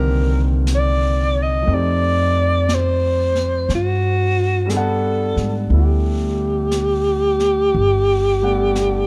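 Intimate and tender, this unhurried, swinging jazz passage puts a breathy, close-miked alto saxophone up front, its mellow subtone melody carrying gentle vibrato over a grand piano with open, long sustain and a woody, thumpy pizzicato upright bass. An acoustic brush kit of snare and hi-hat enters at 0.7 s and sits quietly behind the horn. The dry, dark production frames a brief fragment moving through Cm7 and F9 to Gmaj9.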